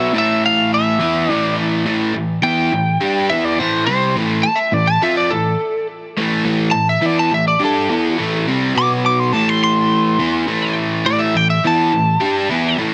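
A straight 4/4 rock groove at 104 BPM in A minor drives this heavy, aggressive cut from a longer piece, where a crunchy, double-tracked overdriven guitar sits up front with a picked riff while a bright, twangy, slightly broken-up lead guitar, coated in tape echo, breaks into a solo at 1.9 seconds over chords moving from Am to B5 and back, all heard through light reverb and a heavily compressed radio sound.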